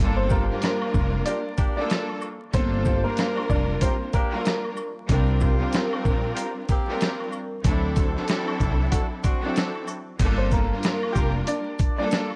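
A swung 94 BPM boom-bap groove in 4/4 drives this dark, gritty hip-hop passage in G dorian, cut from a longer piece, with a sampler-style drum kit up front: compressed, with a thumpy kick, a medium-tuned snare, hi-hat, rim click, shaker and a crash cymbal. Pizzicato upright bass with gut strings supplies a woody low end, while a lush, bowed string section with vibrato sits close and up front as accompaniment through to the end. A slightly detuned upright piano carries the melody with long sustain and an analog delay, falling away at 4.6 seconds and returning at 10.4 seconds. Punchy horn stabs, filtered and touched with delay, punctuate the passage, and maracas and woodblock sit in the background. The harmony moves from Gm7 to C7sus4, then D7, before landing back on Gm7, all within a small, dry room, with a hardware grit and vinyl crackle coloring the recording.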